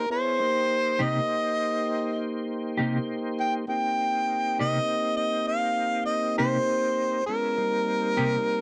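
An overdriven harmonica opens this mournful, brooding slow blues in 12/8, playing a close-miked jazz-style solo up front with light vibrato and scooped notes over smooth, sustained tonewheel organ chords colored by a slow rotary speaker and chorus vibrato. At 1.0 seconds a dark, clean electric guitar enters with fingered accompaniment shimmering through tremolo. A moderate club reverb and a warm, shadowy production wrap this short passage from a longer piece, which rests on a single Cm7 chord.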